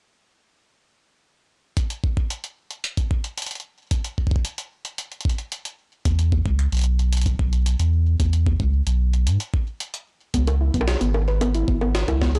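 Glitchy and melancholic, this IDM excerpt moves at 112 BPM in a straight 4/4 in C# minor. A thumpy, pitched-up electronic kick sits up front from 1.8 seconds, alongside a gritty, sampler-style jungle kit of bongos, hi-hat and a high-tuned snare treated with small room ambience and digital delay. A round, deep sine sub bass arrives at 6.1 seconds under an E5 chord, its fast attack and sustained tone pushed up front. After a short break, a warbling, lo-fi pluck with a dusty, detuned character, sub octave and filter sweep enters at 10.3 seconds, playing arpeggios over C#m7 through chorus and digital delay. The whole recording is dry, blown-out and overdriven, giving the piece a crushed grit.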